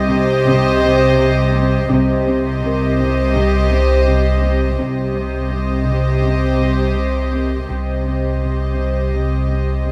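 This uneasy, mysterious fragment of a suspense film score opens at once on a hushed C minor chord of bowed strings played sul tasto with soft attacks. One violin section carries a pure, floating melody while a second violin section holds a line just beneath it, and a close, intimate viola section adds accompaniment with light vibrato. Underneath, a dark double bass section sits in the background beside a more distant cello section. A deep sine sub bass with an added octave and lush chorus holds a sustained drone. A second, very quiet cello section enters at 0.1 s with a rich riff, and a bell-like, delicate celesta is barely audible as a sweet texture. The whole passage hangs in a vast, echoing cathedral reverb.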